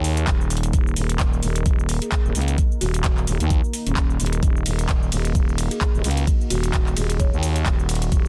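Gritty and swaggering, this bass house excerpt rides on an up-front, growling FM bass with tube saturation and sidechain pumping, a knocking electronic kick and a swung garage kit of handclaps, metallic hi-hat, ride cymbal and shaker, while a woody, buzzing marimba with soft mallets carries the melody through vintage 12-bit sampler grit and delay until 7.7 seconds, and a deep, moody sawtooth pad holds sustained chords with chorus, built-in reverb and pumping in the background of a dense, heavily limited master.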